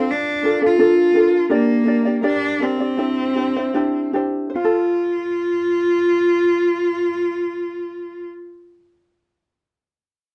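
A clear, focused bowed cello sings a vibrato melody over a light, thumb-plucked acoustic ukulele from the start of this carefree, sunny pop excerpt in F major, which moves at 74-86 BPM with a gentle sixteenth-note swing, slows over its first 4.5 seconds as the chords pass from Bbmaj7 through Gm and Cadd9, and settles on F, all within a dark, warm production and moderate studio reverb.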